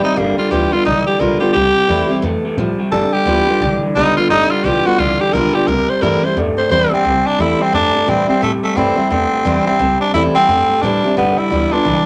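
A moderate club reverb frames this rowdy, upbeat swung rock excerpt, where a raspy, growling tenor saxophone sits up front and solos through the first 7.0 seconds, a full-bodied picked dreadnought picks out accompaniment, a slightly broken-up, twangy electric guitar through a small old amp plays the riff, and a woody, thumpy pizzicato upright bass anchors the low end over chords moving between G7 and C.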